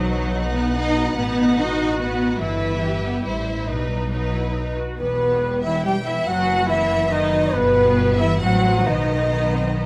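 Dramatic and stormy, this fast romantic orchestral movement in E minor unfolds in an uneven triple metre as warm, expressive violins carry the melody over a clear, intense second violin line, rich bowed violas, a ringing harp weaving arpeggios, and lush cellos and double basses anchoring the bass, before an airy, mellow flute joins at 5.0 seconds with a second line, all set in a moderate stage reverb captured by close, detailed microphones.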